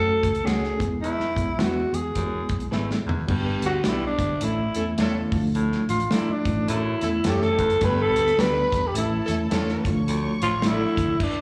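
Uptempo 1960s-style soul at 106 BPM with a danceable swing, this warm live-club excerpt puts a growling, raspy tenor saxophone up front over reedy electric piano with fast tremolo, a round foam-muted bass, a warm soul drum kit with a fill at 2.7 seconds, twangy background guitar stabs through a small old amp, a punchy baritone sax riff, a smooth horn section second line from 4.4 seconds, and lush bowed strings entering at 7.8 seconds, as chords move from F#m and E to G, A and Dm.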